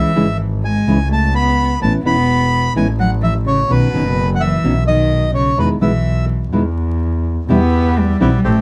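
Passionate and playful, this tango excerpt moves at 127 BPM in 4/4 with a rubato feel, centred on E major. A reedy, dark, airy bandoneon carries the melody up front until 6.3 seconds, while a cello with light vibrato, soft attack and sul tasto bowing sings an intimate second line beneath it. A thumb-plucked nylon-string guitar provides classical accompaniment, and a focused, bowed double bass with vibrato anchors the low end up front. The harmony passes through C#m, Aadd9, Badd9 and Emaj7 before turning to Em at 7.5 seconds, where the cello takes a brief solo and the bandoneon returns with bright, softer stabs. Close, detailed microphones and little reverb give the recording an immediate presence, with vinyl crackle adding a patina.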